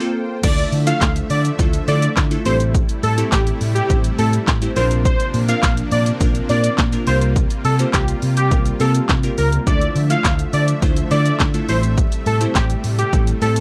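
A dry, close 1970s-style studio sound frames this bittersweet yet confident dance-pop excerpt in D minor at 104 BPM, where a crystalline wavetable pluck and a smooth supersaw pad hold the opening break alone before the drop hits at 0.4 seconds. There, a tape-warm, punchy analog drum machine with kick, snare, claps, hi-hat, shaker and crash sits up front beside a dark, round, foam-muted fingered electric bass, while a thick, bright, wave-folded unison lead with vibrato and slapback echo carries the melody. The pluck, pad, lead and bass all pump with sidechain compression, and the pluck's glassy chorus shimmers over chords moving from Dmadd9 through Am7, Bbadd9 and C7sus4.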